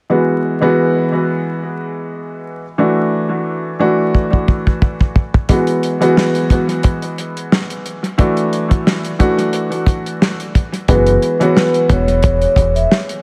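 An echo-heavy mix dusted with vinyl crackle and a light small-room reverb frames this moody, gritty boom-bap hip-hop fragment in F# minor at 89 BPM, swung 55% on the sixteenths. A dark, woody upright piano opens by itself, carrying cassette-tape grit and analog delay as it moves between F#9sus4 and E9sus4 chords. The soul drum kit arrives at 4.1 seconds with a fill, then settles into hi-hat, tight kick and a medium-tuned snare, sitting dry and up front with a rolled-off top and its own touch of analog delay. At 10.9 seconds a new section begins: a round, punchy dub-style fingered electric bass enters deep in its low register. A vibraphone played with soft mallets adds a brief metallic, ringing melody with slow motor vibrato and a boxy small-room quality, also treated with analog delay.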